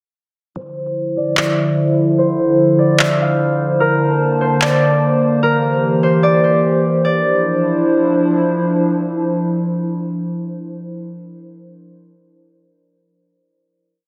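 A sparse half-time beat of tape-warm electronic handclaps, heard only from 1.4 to 4.7 seconds, anchors this spacious, melancholic atmospheric cloud-rap piece in D minor at 148 BPM, where a fingerpicked concert harp rings out a looping, sampled-style melody through tape echo and a low-pass filter over a warbling, nostalgic, detuned pad of sustained chords moving through Dm9, Bbmaj9 and C7 back to Dm9, the whole set in a lush hall reverb as a filter sweep shapes the breakdown and the pad holds the final chord until 11.1 seconds.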